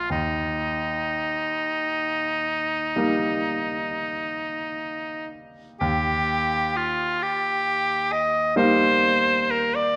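A bright oboe with light vibrato sings a serene, lyrical melody up front, in this romantic classical duo in E-flat major, tuned to A4 = 441 Hz. Beneath it, a brilliant, natural-sounding grand piano accompanies with short sustain, unhurried at 43 BPM in a rubato 12/8. The opening idea returns at 5.8 s, and a moderate recital hall reverb surrounds this passage cut from a longer piece.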